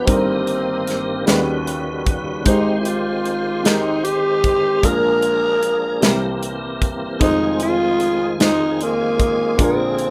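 In a slow, straight 6/8 at 50 BPM, this reverent, uplifting gospel passage sets a growling, breathy tenor saxophone melody with scooped notes up front over woody, slightly detuned upright piano, a full tonewheel organ holding sustained chords through a slow rotary speaker with chorus vibrato, and a polished studio drum kit with punchy kick, medium-tuned snare and hi-hat, heard in a small room with a rough home-demo mix.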